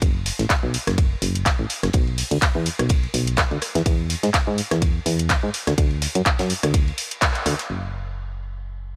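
Bittersweet and soulful, this piano house excerpt moves at 125 BPM in 4/4 with a light swing on the sixteenths. A punchy, round FM bass with a fast attack and decaying notes sits up front, pumping against the sidechain and running from F#1 to G#2 for the full 9.0 seconds. An up-front electronic kick, layered and punchy, drives until 7.3 seconds alongside a house kit of bright hats, handclaps and rim clicks. Further back, a cloth-damped acoustic kit adds dark, high-passed cymbals, pumping hi-hats and a fat, thuddy snare in a small room with a rolled-off top. The band hits an accent at 7.2 seconds, and after 7.7 seconds the bass carries on alone into a short closing section, all under a light reverb.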